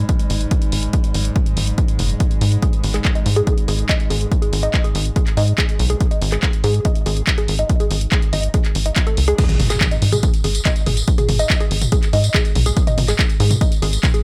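A tight, nasal sawtooth sequencer bass with sidechain pumping drives this intense, industrial peak-time techno excerpt at 142 BPM in 4/4, over an up-front punchy kick and an analog drum machine of pumping hi-hats, handclaps, tambourine, toms and crash cymbal, while an eerie metallic FM drone with chorus hangs in the background until 9.4 s, a dark, woody wave-folded pluck riff with chorus and digital delay enters at 2.6 s, and a very quiet electronic impact marks the drop at 9.4 s, all in a dry mix.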